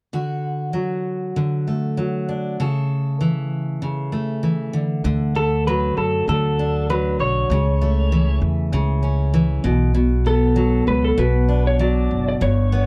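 At 98 BPM in 4/4 with a gentle sixteenth-note swing, this sunny, heartfelt pop passage in D major opens on a full-bodied, fingerpicked jumbo acoustic guitar that carries the accompaniment alone, moving from D to A/C# before the harmony briefly drops away at 4.7 seconds. A pizzicato upright bass with a woody tone enters up front at 5.0 seconds, marking a new section as the chords return to D, then A/C# and Bm. At 5.4 seconds an electric slide guitar takes the melody in a narrow upper register, its fingered lines dark, compressed and slightly broken-up, sitting up front alongside the other two parts. The sound is a dry, close 1970s-style studio recording with light reverb, all three instruments placed near the listener. Cut from a longer piece, it feels like an intimate, unhurried stretch of a larger song.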